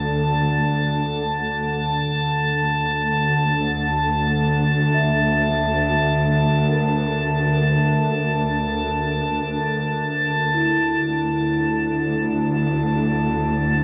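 Reflective and serene, this free-time ambient excerpt floats in a cathedral-like reverb as a soft-mallet vibraphone rings out mellow arpeggios through a diffuse ambient delay, over a dark, veiled con sordino cello section holding the bass, a calm organ-like drone with ensemble chorus, and a glassy, bright texture of drifting overtones sitting up front, while the vibraphone fades in and the drone fades out across the whole 13.8 seconds and the harmony moves from D5 to A5/D at 2.1 seconds and a rootless Fmaj7/D at 10.8 seconds.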